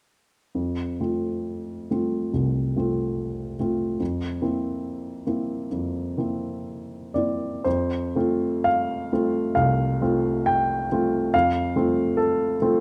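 A warm baby grand piano, heard up front through close, detailed microphones with a natural tone and short sustain, plays a hopeful romantic character piece in F major in a flexible rubato 4/4 at roughly 56-73 BPM, spanning C2 to G5 as its harmony rests on F, moves to C7 over F at 4.0 seconds and settles back on F when a new section begins at 7.7 seconds, framed by moderate recital hall reverb in this brief passage cut from a longer work.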